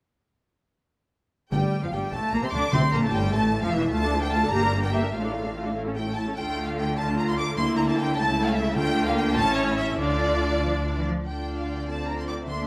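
Restless and stormy, this brief excerpt from a quick classical-period movement in D minor moves in a rubato 6/8 at about 93-103 BPM, with a clear, intense violin section carrying the melody over a focused second violin line, up-front violas with a smooth top, expressive cellos with portamento, close double basses and hard-mallet timpani striking D3 in the background at 1.5, 7.6 and 12.5 seconds, all set in a moderate recital hall reverb.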